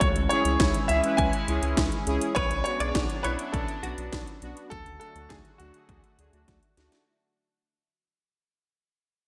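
A clear concert grand piano carries a melancholic, cool synth-pop melody through delay from the start, over a punchy, overdriven house drum kit with cracking snare and gated reverb, a rubbery square bass and a sweeping resonant pad with chorus, as fat, nasal analog synth brass joins almost at once and a clean, scooped electric guitar adds a brief second line over Bmadd9 from 2.4 to 3.9 seconds, while the harmony moves from C#m through Bmadd9 to D, the lush 1980s-style digital sound fading out under a closing drum fill at 6.5 seconds.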